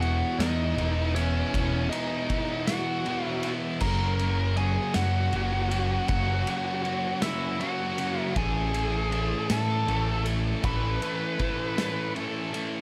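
A slow 6/8 pulse at 53 beats per minute, counted in dotted quarters with a straight feel, drives this bittersweet, restless fragment of quiet-loud alternative rock, cut from a longer piece. Up front, a biting, overdriven lead guitar carries the melody from C#4 to B5, sitting beside a dark, round, punchy picked bass that plays until 11.0 seconds. Behind them, two high-gain guitars grind out the riff: one heavy and scooped, the other double-tracked. They are joined by a picked semi-hollow guitar with a hollow-body, overdriven tone. A loose acoustic indie kit sits in the background, with a pumping studio room, dark crash and ride cymbals, a medium-tuned snare and a punchy kick. The harmony moves from Esus2 to F# at 3.8 seconds and settles on Aadd9, all bathed in studio reverb.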